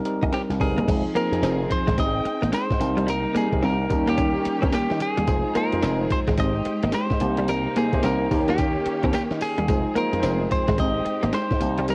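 New jack swing R&B in F minor, this bouncy, slick clip moves at 109 BPM with a strong sixteenth-note swing and cycles through Fm7, Abmaj7, Cm7 and Eb7. A worn, slightly out-of-tune tine electric piano opens the accompaniment through a combo amp, joined almost at once by a gritty, compressed sampler-style breakbeat kit with a thumpy kick, high-tuned snare, hi-hat, tambourine and crash cymbal. A punchy slap bass with an envelope filter sits a touch louder than the rest, while two clean, picked electric guitars recorded direct fill out the band: one, bright and up front, plays a riff through ensemble chorus, and the other, warmer in tone, carries the melody. From 0.9 seconds a lush bowed string section adds sustained chords from a distance, with vibrato and portamento giving it an expressive sheen in the background. Light reverb and a home cassette recording lend the whole mix a tape-soaked, lo-fi grain.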